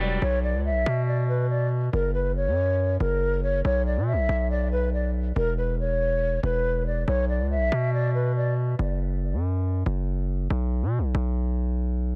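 This is a dark, ominous drill cut taken from a longer hip hop piece, moving with a half-time feel. A mellow concert flute carries the melody up front, its hollow, airy tone softened by a low-pass filter and trailed by delay, with gentle vibrato and a soft attack. Beneath it, a distorted 808-style bass sits just as far forward, saturated, heavy and aggressive, with a fast attack that decays and a gritty noise layer riding on its sine body. The harmony passes through F#, Bmadd11 and E5 between chordless stretches, and the flute drops out at 8.5 seconds, leaving the bass to carry on alone until 12.2 seconds. A small room ambience wraps the pair in a close, confined space.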